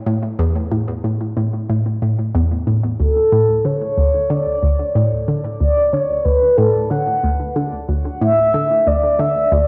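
Ambient excerpt with a luminous, cosmic mood, where a hollow, bouncy square pluck with a detuned edge sets up a low riff through chorus, phaser and tape echo, joined at 3.0 seconds by a round, horn-like synth lead with soft attack and vibrato carrying the melody, both up front in a wet concert hall reverb and a worn cassette sound with warbling pitch drift.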